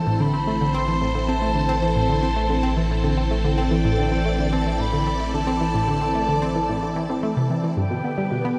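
A detuned, wave-folded analog pluck drives this cosmic, hypnotic slice of sequencer-driven space music at 111 BPM in A minor, its bright, decaying riff coated in chorus and tape echo. Alongside it a swirling, up-front string machine holds sustained chords through ensemble chorus and phaser, while a deep, round analog bass with tube saturation anchors the low end until 7.7 s. A distant, airy concert flute floats a straight-toned melody through tape echo, all bathed in a huge, wet reverb as the harmony moves from Am to G at 7.8 s in this brief cut from a longer piece.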